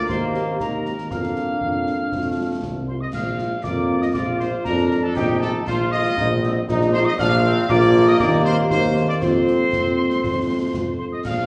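An up-front tuba with light vibrato anchors this spirited, rousing military-style march for wind band in 2/4, cut from a longer piece. A distant, roomy trumpet section carries the melody over tight, bright trombone chords and a dark French horn section in the background, while a pure wooden piccolo with crisp attack adds a second line and a very quiet euphonium joins only until 2.8 seconds. Concert snare, bass drum and bright clash cymbals drive the band in a wet recital-hall reverb.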